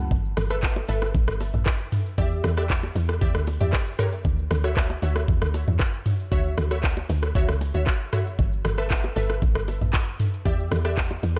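Set in a digital ambience, this hypnotic, soulful amapiano cut at 116 BPM rides a woody, dark log drum bass up front beside an electronic afro-pop kit with a knocking kick, metallic hats, handclaps, rim clicks, shaker and toms re-recorded in a large room, while bright, close and dry congas and bongos sit in the background and a full-bodied, detuned sawtooth chord stab, treated with chorus and tape echo, enters at 0.5 s to move through G69, Em7, Gdim and Dmaj9.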